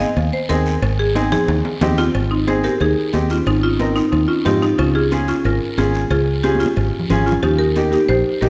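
This joyful, sunny cumbia excerpt opens with a buzzing, woody marimba struck with hard mallets, taking a solo up front over an airy top end. A brilliant upright piano provides accompaniment, and a fingered electric bass sits up front with a warm, foam-muted, direct tone. Congas, high-tuned and played with hard hands, ring quietly in the background alongside a raspy guiro, with cowbell and metal-shell timbales joining at 0.2 seconds. At a brisk 182 BPM in straight 4/4, the tune in Ab major shifts into a new section at 2.1 seconds, with drum fills punctuating the groove and the harmony moving to Db at 4.8 seconds and then to Eb at 7.4 seconds. The close, dry percussion sits within a moderate scoring stage reverb, giving the whole a dark production.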